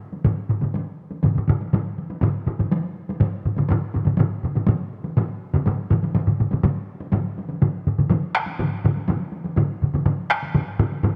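A lightly reverberant recording captures a driving, ceremonial piece of Japanese traditional taiko drumming at 122 BPM in a straight 4/4, cut from a longer performance. Three taiko parts struck with hard sticks enter in quick succession from 0.1 seconds: two sit up front, one in a live room and one in a small room, while a closely captured third ensemble sounds from the background. The music moves into a new section at 7.1 seconds, and all three parts carry on to the end.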